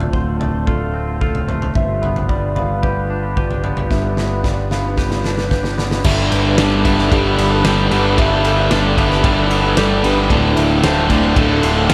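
A soft, flute-like pad holds mellow sustained chords beneath two fingered electric guitars playing arpeggios: one dark, slightly broken-up and lo-fi through a small old amp, washed in lush chorus and analog delay, the other clean and twangy with spring reverb and its own delay. This is melancholic, cinematic post-rock at 112 BPM in a straight 4/4, with a bright, direct picked bass and a loose indie drum kit with a fat snare, punchy kick and dark cymbals up front in a pumping room. The harmony moves from Dm7 to G7, and a drum fill from 3.9 to 6.0 seconds leads into the second section. At 6.0 seconds a bright distorted guitar riff comes in up front, joined further back by an overdriven semi-hollow guitar with subtle chorus, as the chords shift to Gadd9 and settle on Dm. The whole dreamy mix is soaked in a huge ambient reverb, giving this fragment of a longer piece a vast, aching sense of space.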